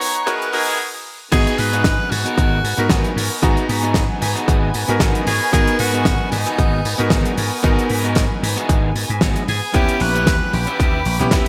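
A bright, 1980s-style digital sheen and a moderate plate reverb frame this sensual, sleek nu-disco excerpt, cut from a longer piece and moving at 114 BPM in 4/4 with a light 16th-note swing in G# minor. It opens with a short build-up as a filter sweeps across the cutting, clangy electric grand piano, while an edgy, forceful tenor saxophone carries the vibrato-laden pop melody with delay. A brief stop arrives at 0.8 seconds before the drop lands at 1.3 seconds, where the punchy, amped slap bass joins with tube saturation and sidechain pumping. A layered electronic kick sits beneath a dry, damped 70s kit with a fat, up-front snare, its hats, cymbals and snare high-passed and touched by gated reverb. In the background, a slightly broken-up picked electric guitar riff carries analog chorus and 12-bit sampler grit, adding a clean fill around 4.0 seconds, while veiled, con sordino strings hold pumping sustained chords. 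The harmony rests on G#m7 before turning to D#7b9b13 near the end.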